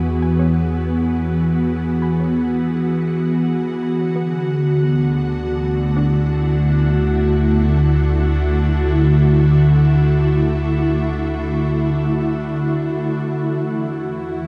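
Luminous and serene, this free-time ambient passage, cut from a longer piece, sets an ethereal, airy pad of sustained chords up front over a deep, rumbling bass drone, while a very quiet, soft round pluck traces arpeggios from 0.2 to 11.8 seconds, all suspended in a vast cathedral reverb that lingers for 6.2 seconds.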